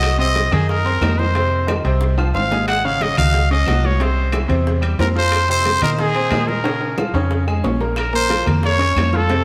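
A fiery, passionate salsa excerpt led by a raspy, growling solo trumpet with vibrato up front, over a bright grand piano with audible action noise, a dark, round, foam-muted electric bass, ringing high-tuned congas, tight hard-hand bongos, metal-shell timbales, and distant woody claves, with drum fills at 2.0 and 6.6 seconds, all set in moderate plate reverb heard from further back in the room.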